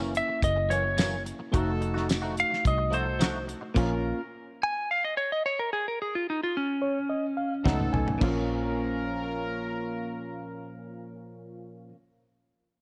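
Brooding and smoky, this straight-eighth soul blues moves at 108 BPM in Bb harmonic minor, a short cut from a longer piece set in light reverb and small room ambience. A dark, compressed lap steel carries the melody up front from 0.2 to 7.6 seconds, its slide tone clean and fingered, while a reedy electric piano with light overdrive plays accompaniment through its built-in speakers. A bright, twangy clean guitar recorded direct adds picked stabs colored by analog chorus, and a clear horn section with a smooth top holds tight sustained chords. Underneath, a round, foam-muted fingered bass and a cloth-damped, thuddy drum kit with a fat snare, tight kick, dark cymbals and tambourine sit in a small room, the kit placed up front. At 3.8 seconds the band stops on Bbm, leaving the lap steel and electric piano, which plays a fill from 6.5 seconds before a drum fill at 7.7 seconds brings the group back over B7 and returns to Bbm.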